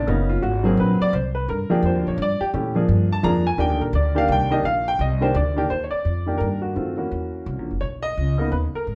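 Jazz piano trio in a relaxed, swinging triple metre, this short cut from a longer piece features a baby grand piano with a natural, short-sustained tone soloing on the melody through the first 5.7 seconds over chords such as Ab9, Gm7 and Ebmaj7 before the harmony shifts to Gb7 and Bmaj9, while a pizzicato upright bass on gut strings supplies a woody, dark, thumpy line, both instruments up front yet wrapped in a wet club reverb that places the listener further back in the room.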